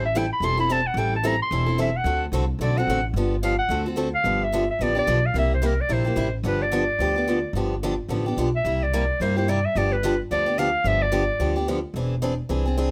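Lively, swinging acoustic string swing in G mixolydian at 218 BPM, cut from a longer piece, where a breathy, vintage-toned clarinet with light vibrato and a soft attack carries the melody until 11.6 seconds, taking a jazz-style solo through the first 4.3 seconds, over a bright, boxy parlour steel-string guitar picking the accompaniment and a woody, dark pizzicato upright bass, all three up front in light reverb as the chords move through Am7, D7, G7 and C7 to a closing Eaug7.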